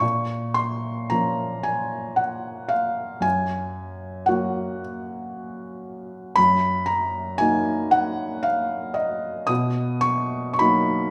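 Wistful and melancholic, this brief excerpt from a romantic classical nocturne in 3/4 features a solo felt-muted upright piano, soft, mellow and intimate with audible action noise, sitting up front in a moderate recital hall reverb as its rubato phrasing drifts through chords from Bbm and Gb to Ebm/Gb and Bmaj7.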